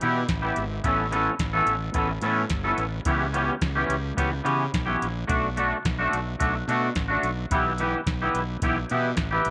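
Moody and bittersweet, this indie rock excerpt moves at 108 BPM in a straight 4/4, with a bright, twangy, double-tracked electric guitar riff sitting up front over a fuzzy, overdriven fingered bass. A soft vintage rhythm box keeps time with a deep kick, crisp snare and metallic hats, all three parts playing through the full 9.5 seconds. Moderate spring reverb colors the sound, and the chords move from Em/B through Aadd9, C#m7b5 and Bm7 before returning to Em/B at 7.5 seconds, with the tuning sitting slightly flat at A4 = 437 Hz.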